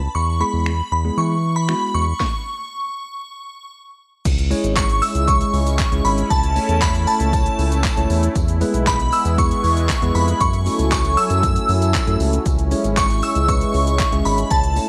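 A shimmering, dreamy FM bell with ensemble chorus and slapback echo carries the melody up front in this bittersweet, energetic dance-pop excerpt, over a deep, round analog bass and a clean tine electric piano that both pump with the sidechain, plus a punchy house drum kit with cracking snare, crisp hats, finger snaps, handclaps, shaker and crash; after a stop from 2.2 to 4.3 seconds, a sweeping, detuned resonant pad and a very quiet, jingly tambourine join, all set in light digital reverb.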